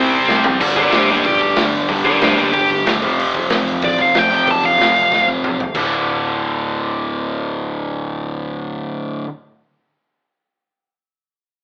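This angry, urgent punk rock fragment at 186 BPM in D minor opens with a pile of guitars and bass already sounding on a C5 chord: a dark, up-front high-gain lead guitar with distortion and digital delay, a bright, double-tracked heavy guitar sitting in the background that drops out almost at once, a hollow-bodied overdriven semi-hollow guitar pushed forward, and a sludgy guitar with a rounder overdriven tone grinding on the riff. Underneath, a growly, direct electric bass adds punch from the back of the mix. A raw garage drum kit crashes in at 0.3 seconds with a fill, its gritty, saturated sound carrying a medium-tuned snare, punchy kick, hi-hat, crash and toms, with a rolled-off top as if played in a small room. The lead guitar tears into a solo over Gm and then F5, falling silent at 5.3 seconds, and the drums close their part with another fill that ends at 5.8 seconds. The remaining guitars and bass push on into a brief section on D5, the whole band heard live in one room with light reverb and a lo-fi AM radio character.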